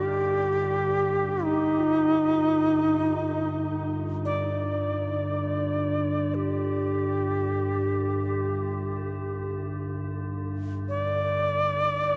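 Bathed in a vast, echoing reverb, this spacious, meditative world-music fragment in free time puts a bright, reedy low wooden flute up front, its chiffy tongued notes and vibrato trailing tape echo, over an eerie, warbling metallic drone thickened with chorus, while a very quiet quartz singing bowl rings darkly with slow beating until 10.3 seconds.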